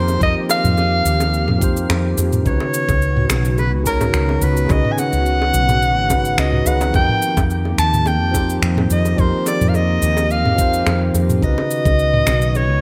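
A bright, 1980s-style digital sheen with plate reverb frames this sunny sunset chillout excerpt in a light swing, where a clear, up-front soprano saxophone sings a jazz-style melody with vibrato and scooped notes through digital delay over mellow tine electric piano, an airy chorused pad in the background, round, woody fretless bass, a smooth R&B kit of finger snaps, shaker and gated-reverb toms, soft high-tuned bongos and a knocking electronic kick, as the chords move between F9sus4 and Db9sus4.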